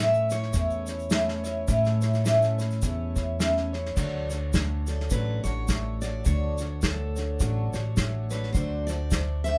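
A full-bodied steel-string acoustic guitar carries the melody and takes a solo from 4.0 seconds in this gentle, nostalgic swung acoustic folk piece, backed by a shimmering, octave-doubled twelve-string guitar up front, a woody pizzicato upright bass, a grainy, close egg shaker and an unplugged drum kit played with bundle sticks and a punchy kick, all in a small room with faint mains hum.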